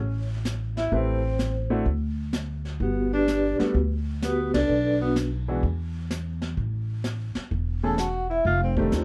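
A swung 4/4 at 127 BPM carries this cool, late-night small-group jazz clip, with soft-mallet vibraphone taking the ringing, mellow melody over a breathy, subtoned tenor saxophone second line that sounds distant and whispered. Woody pizzicato upright bass thumps up front from the start, a vintage brush kit with dark cymbals and a pumping small-room sound joins at 0.5 seconds, and a clear grand piano adds accompaniment from 0.9 seconds. The sound is dry, and the band hits a shared accent at 4.5 seconds.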